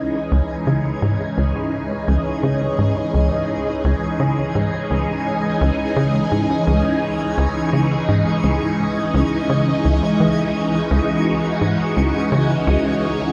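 Hypnotic and expansive, this excerpt of ambient, sequencer-driven space music in C# minor moves at 85 BPM over a single C#madd9 chord, with a swirling, vintage string machine holding sustained chords through ensemble chorus and phaser up front, a tight, punchy sawtooth sequencer bass driving a plucked, wave-folded riff through delay from 0.3 seconds, and a twinkling granular FM texture with octave-up shimmer fading in from the background at 0.5 seconds, all set in a vast cathedral reverb with a cassette-tape character.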